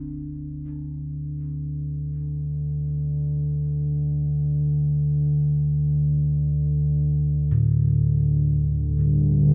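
In free time, this dark, desolate ambient fragment opens on an ominous, rumbling drone that fades in up front, its detuned sawtooth-and-triangle tone sustained with a long release under its built-in reverb, while soft bronze gamelan-type bossed gongs with a round, beating shimmer trace arpeggios through a diffuse ambient delay. Near the end, at 8.7 seconds, a deep, moody pad with chorus slides in to join them, sustaining its chords over G5/D. Everything sits in a wet cathedral-like space with the faint grain of cassette tape, tuned slightly high to A4 = 441 Hz.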